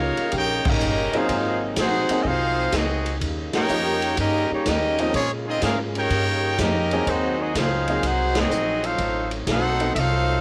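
Big band swing at 125 BPM in 4/4, joyful and swinging, cut from a longer piece and captured as a home cassette recording in a booth, with a brilliant, up-front trumpet section carrying the melody over a dark, distant trombone line and very quiet, mellow sustained saxophone chords. Woody, thumpy pizzicato upright bass on gut strings and a roomy, distant drum kit with a boomy kick and rolled-off top hold the groove, while a bright upright piano with audible action noise comps from 1.1 s. The full band hits accents at 0.6, 3.5 and 8.3 s over changes moving through Eb7, Ab7 and Bbm7 to a closing Adim7.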